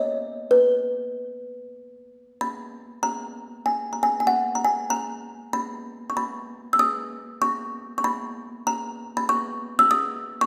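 Hawaiian-flavored music in B major at 96 BPM with a gentle swing on the eighths, dreamy and relaxed in mood, cut from a longer piece. A solo kalimba carries everything from 0.0 to 10.5 seconds, its woody, hollow-box pluck sounding mellow and soft, with short notes ranging from B4 to E6. The instrument sits close-miked and up front, full and dry in itself, while a moderate recital hall reverb lends the space around it a gentle bloom, and a new section begins at 3.0 seconds.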